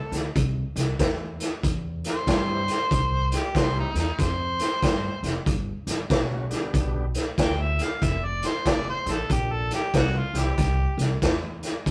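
Electric blues shuffle with a soulful, gritty swing, cut from a longer piece, where a mellow harmonica takes a vintage, jazz-styled solo up front with light vibrato and scooped notes over woody pizzicato upright bass and a boomy, saturated garage drum kit, while a reedy tonewheel organ with key click and slow rotary speaker slips into the background at 2.3 seconds, all captured in a rough rehearsal-room sound with tube saturation and moderate reverb.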